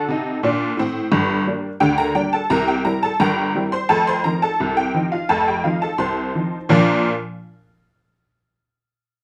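A light reverb surrounds a detuned, jangly honky-tonk upright piano that sits up front in this short cut from a longer ragtime piece. The mood is cheerful and playful, moving at 86 BPM in a straight 2/4 feel in B-flat major, with the instrument tuned to A4 = 436 Hz. Playing solo, the piano spans F1 to C6, its bright, vintage tone marked by a short sustain. The harmony travels through D7, G minor, C7 and F7 before arriving on B-flat at 6.7 seconds, where a new section begins. The piano stops at 7.1 seconds, and the recording ends at 8.1 seconds.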